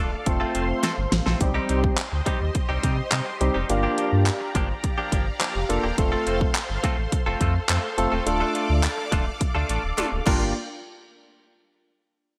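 A soft, detuned supersaw with sidechain pumping opens this confident, energetic dance-pop excerpt alongside a twangy, direct-recorded clean electric guitar riff and a deep sub bass with octave, before a barky tine electric piano with lush chorus and a punchy pop drum kit with fat snare, metallic hats and gated reverb enter at 0.3 seconds, and a distant, very quiet group handclap appears briefly at 0.8 seconds and returns from 6.5 seconds, within a bright 1980s-style digital production touched with light reverb.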